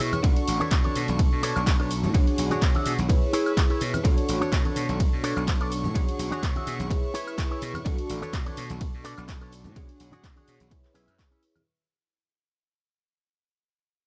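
A punchy electronic kick drum sits up front in this sensual, funky slice of filtered disco house, cut from a longer piece, driving a swung 126 BPM groove in B dorian through chords of Bm9, E13/B and C#m7/B. A gritty, overdriven slap bass rides low beside it, while a detuned sawtooth polysynth comp with a sub octave and filter pluck adds chorus and phaser shimmer above, and an electric guitar through an envelope filter plays a dark, clean riff roughened by vintage 12-bit sampler grit. An analog drum machine supplies handclaps, hi-hat, ride cymbal, shaker and woodblock, and ringing tambourine and congas struck with hard hands sit in the background. Behind them, a chamber string section with gut-string tone and light vibrato holds reedy, bowed chords. Sidechain pumping breathes through the bass, synth, guitar, strings and hand percussion, and the dry mix carries little reverb as it plays as a drop from the start and begins fading out at 4.0 seconds.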